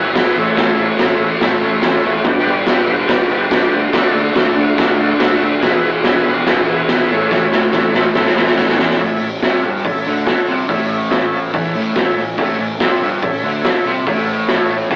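A rough rehearsal-room recording with cassette-tape character, an AM radio tone and a stone-room reverb frames this swaggering, raw garage rock excerpt at 142 BPM in A major: a double-tracked, picked fuzz guitar riff and a buzzy vintage combo organ, heavy with vibrato and holding sustained chords, ride over a dark, round fingered bass in the background, while a boomy, gritty drum kit sits up front from 0.2 seconds with a fill from 7.3 to 9.0 seconds and a faint, jingly tambourine joins in, as the chords move through A, G, D and E before a new section begins at 9.0 seconds.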